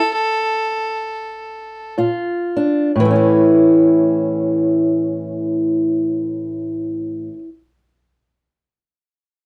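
A single bowed fiddle opens this short excerpt of acoustic country blues in A major, rich, biting and up front, holding an A in free time for its first 1.9 seconds while the pulse slows. At 2.0 seconds a fingerpicked, ladder-braced acoustic guitar takes over, with old strings and a woody, boxy tone, as it moves from a Bb chord back to A across a range from A2 to F4. The mood is swaggering and rollicking, set in a dark production with moderate studio reverb.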